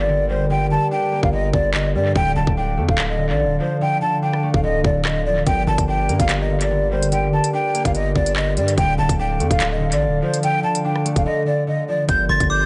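A breathy, hollow jazz flute with vibrato carries the melody up front through analog delay in this tense, menacing drill cut at 145 BPM in half-time, G minor, moving between Gm and Dm. A ringing fingerpicked concert harp with its own delay and a dark, roomy French horn section holding distant sustained chords sit beneath it, while a punchy, heavy 808-style bass anchors the low end. The drill kit enters at 1.2 s with a hard-clipped kick, crisp hats, handclaps and rim clicks, and a delicate, tinkling synth tine bell with chorus and phaser appears at 12.3 s, all set in an echo-heavy mix with light studio reverb.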